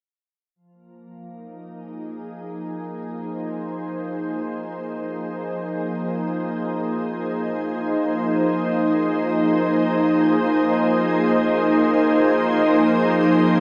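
A soft, organ-like pad built from pure sine tones sits up front, holding sustained chords on an F minor 7 from 1.1 seconds to 13.6 seconds, its detuned voices thickened by ensemble chorus and a built-in reverb. This hazy, meditative ambient piece in F minor drifts in free time, the pad fading in gradually with a slow attack and long release that leave a bright, calm glow. A wet echo chamber reverb with a two-second tail surrounds the sound, and the passage is cut from a longer piece.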